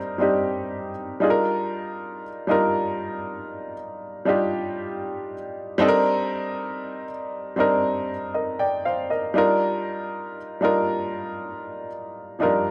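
A slow, straight 4/4 pulse at 59 BPM sets an unhurried R&B feel in this short cut from a longer piece, carrying a late-night, longing mood. A dark baby grand piano plays alone from 0.0 to 12.7 seconds, ranging from F3 to G5. The harmony moves between Cm9 and Ebmaj9, shifting at 1.2, 5.8 and 9.4 seconds. The piano's tone is mellow and intimate, with short sustain and audible action noise that keep it natural and close. It sits up front in a dry studio ambience, and the gritty hardware recording gives the sound a slightly rough edge.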